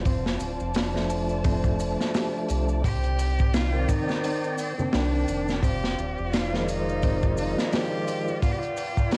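A smoky, lo-fi cassette home recording with light reverb and a small-room ambience frames this brooding trip hop fragment, cut from a longer piece and moving at 86 BPM in 4/4 with a 16th-note swing, tuned to A4 = 436 Hz. A crunchy, saturated breakbeat kit sits up front with a tight kick, a medium-tuned snare and hi-hat, its top rolled off, while ringing maracas and congas add a faint small-room shimmer. A round, deep analog bass, dark and tube-saturated, anchors the low end until 7.5 seconds, beneath a fat, lightly overdriven tonewheel organ with key click, fast rotary speaker, tremolo and tape echo. Behind them, a woody, lush string section holds sustained chords in the background, and a very quiet, bright nylon-string guitar fingerpicks classical arpeggios. At 2.8 seconds a clear, biting cello enters with an intense, close melody roughened by vintage 12-bit sampler grit and tape echo, and from 4.9 seconds an airy, breathy wind-like noise texture drifts in on a held D5. 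The harmony moves through F6, Cmadd9, Fm7 and G7.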